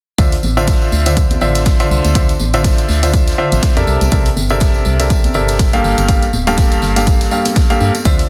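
A swung 16th-note groove over a punchy analog kick, electronic hi-hat and tambourine, a soft-handed tambourine and conga layer, and an airy acoustic street-band kit with a medium-tuned snare in the background drives this soulful, bittersweet piano house excerpt, where a clear, worn baby grand with audible action noise sits up front playing a pumping, filtered riff with tape echo over a hollow, dark, organ-like FM bass, moving through Dm9, C13 and Gm9 under a heavily compressed, radio-like sound with light small-room reverb.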